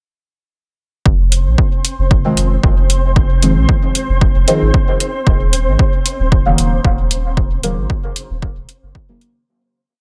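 A dry, cavernous mix carries this nocturnal dub techno piece at 114 BPM in F phrygian, where a punchy overdriven four-on-the-floor kick enters at 1.1 seconds alongside a round, syncopated sub bass riff pumping against it. At 1.3 seconds, layered, overdriven closed hats arrive with a grainy, flickering granular texture holding a high note in its own reverb. Dark, wave-folded chord stabs from 2.2 seconds move one shape in parallel from Fm7 to Ebm7 through chorus, phaser and dub echo, before the piece fades out from 6.7 seconds.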